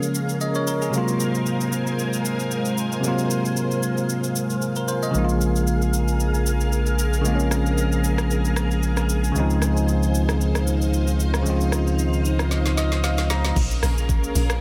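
Swung sixteenths drive this deep, late-night amapiano fragment, where a smooth R&B drum kit with knocking kick, woody snare and metallic hats sits under a bell-like, barky tine electric piano and a lush vintage string machine pumping with ensemble chorus, while a thick saturated sub bass enters at 5.1 seconds before a drum and piano fill gives way at 13.6 seconds to a drop carried by a round, percussive log drum bass.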